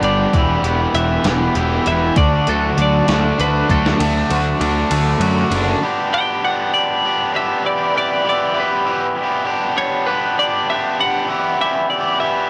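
Cut from a longer piece, this home cassette recording with light reverb has a jangly, upbeat indie rock sway in 6/8, led by a bright, twangy, compressed twelve-string electric guitar melody over buzzy vintage combo organ chords in the background. An up-front overdriven electric guitar riff and a biting, chorus-and-tape-echo-soaked guitar riff sit beside a punchy fuzz bass and a crisp, sampler-style 8-bit drum machine with a thumpy kick. A clean electric guitar solo opens the passage, the kick and snare drop out at 4.0 seconds, and at 5.7 seconds the bass and drums stop, leaving the guitars and organ to ring through the G, Em7 and Gmaj7 chords.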